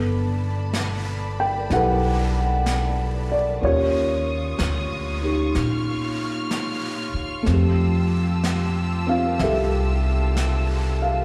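Heard through a live venue's PA with recital hall reverb and vinyl crackle, this short excerpt of a late-night, romantic jazz ballad in a swung 4/4 moves through Gmaj9, Eb9 and Fmaj9. A dark, mellow upright piano sits up front with audible action noise, slapback echo and plate reverb, beside a woody, thumpy pizzicato upright bass, while a lush, bowed symphonic string section holds clear sustained chords with smooth vibrato. From 0.7 seconds a soft jazz brush kit joins on brushed snare and hi-hat, touched by its own slapback echo.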